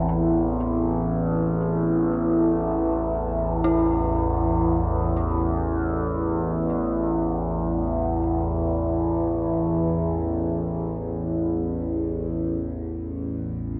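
In free time, this dark, ominous ambient drone, tuned to A4 = 441 Hz and cut from a longer piece, sets an up-front, resonant sawtooth-and-sine drone with moving overtones and phaser beneath a deep, moody, evolving pad that holds detuned, sub-octave sustained chords on A5 with chorus. Meanwhile, an eerie, inharmonic FM bell plays chorused arpeggios with tremolo and tape echo in the background until it stops at 12.3 s, leaving the drone and pad to sustain to 13.8 s, with the recording steeped in a cathedral reverb and the warbling pitch drift of a worn cassette tape.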